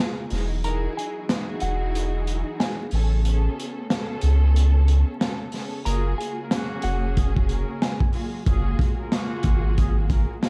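Boom-bap hip-hop in F# major at 92 BPM with a swung 16th feel, warm and soulful, built on a crunchy, saturated breakbeat kit with a punchy kick and rolled-off top, a round, up-front sub bass entering at 0.3 seconds, dark bowed strings with vibrato, a very quiet hollow, warbling pad holding sustained chords, a clean semi-hollow electric guitar melody with delay from 0.6 to 8.1 seconds, and mellow, distant trumpet stabs arriving at 5.8 seconds, all moving from Emaj9 through Amaj9 to F#maj9 in a dry, dark production laced with vinyl crackle.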